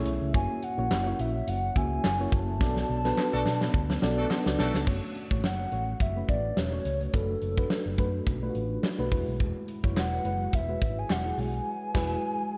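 1980s-style pop with a nostalgic, glossy mood and a light swing, cut from a longer piece and set in a lush hall reverb with a dark overall sound. A hollow, woody clarinet-like synth lead with chorus and delay carries the melody over a mellow FM electric piano with chorus and tremolo, a round picked electric bass, and a big rock drum kit with a punchy kick and bright cymbals, while crisp group handclaps sit in the background. After a drum fill starts at 2.6 seconds, a distant horn section adds stabs from 3.3 to 4.8 seconds, and the chords move through F#7, Bm7, F#m, D6/F# and Eadd9.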